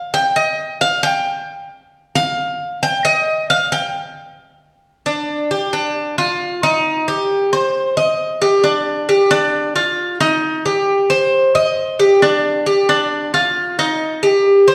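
A solo Cuban tres carries this short latin piece at 134 BPM in a straight 4/4, its picked double strings sounding metallic and up front, with some strings doubled at the octave and a melody ranging from D4 to G5. The mood is warm and nostalgic, and the tuning sits slightly high at A4 = 445 Hz. The instrument rings in a reverberant recital hall with a 1.5-second decay, and the passage moves into a new section at 5.1 seconds before ending at 14.7 seconds as a fragment of a longer piece.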